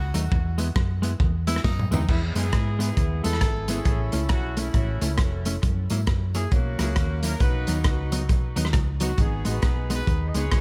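A joyful, bouncy ska excerpt in E major at 135 BPM with a swung feel opens on an edgy, forceful tenor saxophone solo with tape echo over a round, dark hollow-body bass, clean compressed semi-hollow guitar with spring reverb, a gritty, saturated breakbeat kit with a punchy kick and dark cymbals, and a very quiet jingly tambourine, until a drum fill at 1.6 seconds hands the melody at 1.9 seconds to a smooth-topped horn section with light vibrato and tape echo as the chords move from E through A, F#7 and B to G#m.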